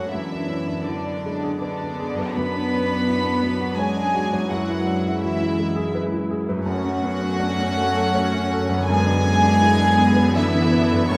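This excerpt from a moving, sorrowful film score opens with the full orchestra already sounding together, moving through a gentle rubato 3/4 pulse at about 82 BPM. Two violin sections carry the music, one singing the melody up high while the other traces a second line an octave lower, both bowed sul tasto with a soft, pure, floating tone heard close up. Beneath them a dark, woody viola section adds lush vibrato accompaniment in the background. A baby grand piano with a natural, short-sustained sound fills out the harmony, and a very quiet concert harp rings out fingerpicked arpeggios. The bass is shared by a rich cello section and a distant double bass section holding a low F#, and the harmony drifts from Bmadd9/F# through Eadd9/F# and F#m to G#dim/F# over that held pedal, all bathed in a moderate scoring-stage reverb.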